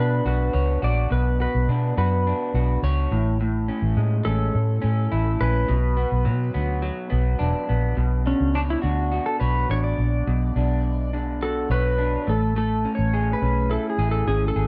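A dark, hazy production with light reverb frames this mellow indie pop passage in B dorian, moving at 105 BPM in a straight 4/4 and cut from a longer piece. A round, punchy, foam-muted electric bass sits up front beneath a slightly broken-up, lo-fi electric guitar through a small old amp, its lush chorus carrying a warbly pitch drift, while a clean, twangy lap steel with its own lush chorus and volume swells carries the melody. At 8.0 seconds the music shifts into a new section where the slide guitar takes a solo over chords that return from Bmadd9 to Amaj7.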